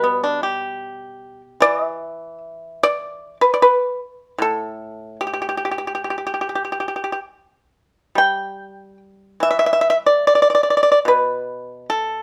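Flowing and elegant, this short cut from a longer Chinese traditional piece features a solo pipa, played with fingerpicks and sitting up front with a mellow, dry, percussive tone, moving freely in rubato around 73 BPM in 4/4 in the G gong mode, spanning A2 to G5 over 12.2 seconds with light reverb and a live-room feel.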